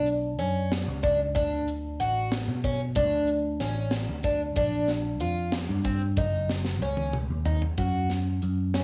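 A bright, shimmering twelve-string acoustic guitar sits up front, picking octave-doubled arpeggios with a boxy parlour tone and audible finger squeak over chords moving from Bm through D5 and A# to F#5. This driving, intricate progressive instrumental moves in 5/8, with a punchy, amped electric bass and an airy metal drum kit with a high-tuned snare and tight kick; the drums play a fill from 6.5 to 7.8 seconds before a new section begins. Light reverb and small-room ambience give this short cut from a longer piece the feel of a home cassette recording.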